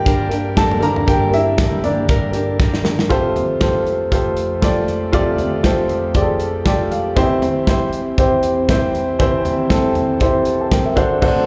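Heard as a live club set through the venue's PA, this clip of piano-driven pop carries a roomy club reverb with a light studio sheen, and its mood is hopeful and warm over a lightly swung sixteenth-note feel. A woody, polished upright piano with short sustain sits up front throughout, its slapback echo adding snap as it leads the opening and drops in a brief fill at 6.4 seconds. Beside it, a full-bodied, jumbo plugged-in steel-string acoustic guitar fingerpicks a riff with audible finger squeak, then falls away and returns only at 11.2 seconds. A modern acoustic drum kit with a tight kick and medium-tuned snare, placed up front in a small room, plays a fill at 2.6 seconds as the music shifts from its opening passage into its second section. Underneath, an airy, breathy pad of detuned sawtooth and triangle tones with a noise layer swells in slowly and lingers softly in the background, its chorus lending a bright shimmer to chords that move from Gm through Fadd9 and C/E to D7/F#.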